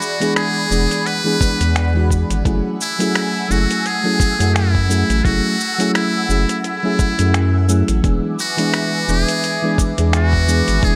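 A lightly reverberant sound frames this relaxed, wistful sunset chillout excerpt, which carries a gentle swing on the sixteenths. A buzzy, thin trumpet with a metal mute takes the melody from the first moment, its light vibrato trailing through digital delay and shimmer reverb. Beneath it an airy, breathy pad holds sustained chords with chorus and phaser, while a dusty soul sampler-style drum kit of finger snaps, hi-hat and shaker sounds gritty in a small room. A mellow FM electric piano, soft and full-bodied, joins at 0.2 seconds, and a round, deep analog bass enters at 0.7 seconds, sitting up front with a filter sweep. A compressed, thumpy electronic kick drum arrives at 1.4 seconds, and across the excerpt the harmony moves from E7 to F#m9 and back to E7.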